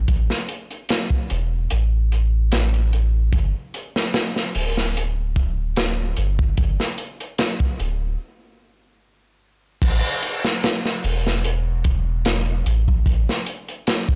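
Hypnotic and dark, this short trip hop excerpt at 74 BPM with a slight 16th-note swing sets a round, deep analog bass with a sustained filter sweep beneath a crunchy, gritty breakbeat kit of tight kick, medium-tuned snare, hi-hat and dark crash cymbal, both up front in a dry, blown-out, overdriven mix that drops into a stop from 8.2 to 9.8 seconds before the bass falls away at 13.3 seconds and the drums carry on to 14.2.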